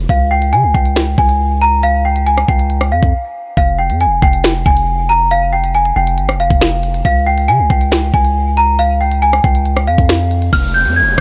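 A dry, close-up mix frames this tense, dark half-time drill fragment, where a slightly out-of-tune celesta with medium felt hammers plays a delicate, bell-like melody colored by tape echo and a boxy small-room tone. Underneath, a deep, sine-like 808-style bass with a fast attack sustains and decays, while an up-front electronic drum kit lays down knocking kick, sharp snare, crisp hi-hats, rim clicks, finger snaps and crash cymbal. A short break falls between 3.1 and 3.6 seconds as the harmony shifts between Db and Fmadd9, and an electronic downlifter enters at 10.5 seconds just before the cut.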